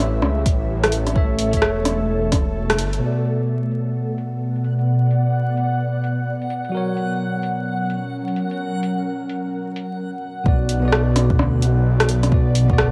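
Future garage at 129 BPM in B minor, this melancholic, nocturnal excerpt is cut from a longer piece, with a swung 16th-note feel and vinyl crackle over a digital ambience. A clean tine electric piano, heard through a combo amp with 12-bit sampler grit, delay and sidechain pumping, plays accompaniment throughout, and a filter sweep moves across it from 3.0 to 10.5 seconds. An ethereal, airy pad of detuned, chorused unison voices holds sustained chords up front, moving from A to Bm and F# before returning to Bm. A menacing, evolving detuned saw bass with tube saturation sits in the opening and returns at 10.5 seconds alongside an overdriven electronic kick, while an overdriven deep house kit of hi-hat and rim click, with filtered hats, runs up front, and the whole band lands an accent at 2.7 seconds. In the middle stretch, a reversed, dreamy granular texture floats quietly high above, bathed in its own reverb.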